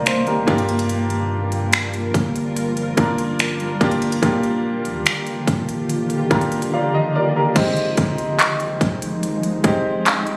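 Late-night and sensual, this contemporary R&B piece moves at a slow 72 BPM in straight 4/4, centred on F dorian and cut from a longer recording. A clear, worn grand piano sits up front with the accompaniment, over a granular cloud pad whose detuned, blurred chords bloom slowly and hang in their own built-in reverb. Beneath them, a long 808-style bass gives deep, sine-like notes with a fast attack that decays mellowly. The electronic trap kit also sits up front, with a hard-clipped kick, crisp hi-hats, finger snaps, handclaps and crash cymbal. The harmony moves from Gm7 to Ebmaj9, and the piano plays a fill from 5.9 s, the drums drop out at 6.7 s, and a new section lands on Fm7 at 7.6 s. The sound carries light room reverb and compression, with the slightly informal character of a phone recording.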